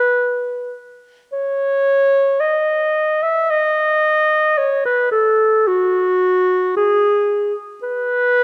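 Moving in a free, rubato 4/4 around 55 BPM, this serene, lyrical classical fragment, cut from a longer piece, features an unaccompanied solo clarinet up front from 0.0 to 8.4 seconds, its mellow tone, soft attack and smooth top ranging from F#4 to E5, tuned to A4 = 436 Hz and set in a moderate concert hall reverb.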